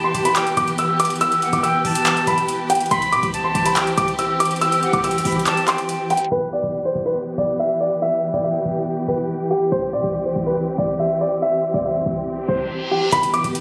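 A dark, menacing trap beat in E minor at 141 BPM with a half-time feel opens on a mellow, intimate piano melody with audible action noise, an airy flute second line through digital delay, lush bowed strings holding close, vibrato-rich chords, and a punchy, tight 808-style bass, all moving between Em and C. A booming analog drum machine with metallic hats and handclaps enters at 0.1 s, its kick dropping out just before the drums and flute stop at 6.3 s, when a filter sweep runs through the remaining parts. A reverse cymbal and electronic impact then bring the drums back at 13.1 s, all heard through the light reverb and compressed, phone-recorded sound of the room.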